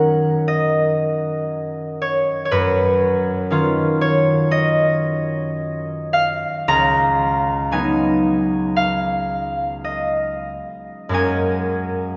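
A solo concert harp opens at once, its bright, ringing, fingerpicked tone placed up front as it spans from C#2 up to A#5. This is a graceful, serene classical piece in 4/4, played with a rubato feel that lets the pulse breathe freely. The harmony drifts through lush sixth, ninth and suspended colours, settling on an added-ninth chord near 11.1 seconds. A cathedral-like reverb with a 5.6-second decay surrounds the instrument, and the church or concert-hall sound is rolled off at the top around 7.9 kHz, lending the wash a soft glow. Tuned slightly under standard pitch at A4 = 439 Hz, the 12.2-second passage is cut from a longer work.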